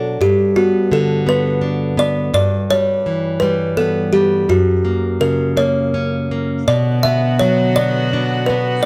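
A woody, thumb-plucked kalimba carries the melody up front in this gentle, dreamy B minor lullaby in a rubato 6/8 at 56 BPM, over fingerpicked nylon-string guitar with bright, fresh strings through G, Em/G and F# before a soft-attack chamber string section, bowed sul tasto, floats in on sustained chords at 6.7 seconds as the harmony settles on Bm, all in a closely miked, lightly reverberant space with a faint mains hum in this short excerpt of a longer piece.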